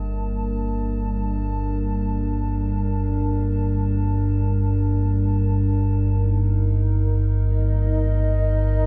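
Ominous and dark, this ambient excerpt in free time is anchored by a deep, rumbling drone sitting up front with subtle chorus and its own reverb, while a filter sweep moves across it throughout. A moody, detuned analog pad with ring modulation and chorus fades in, holding sustained chords that move from G minor to E-flat at 6.1 seconds. In the background, a bronze singing bowl struck with a wooden striker adds a metallic, slowly beating ring as it fades out, all set in light reverb with small-room ambience.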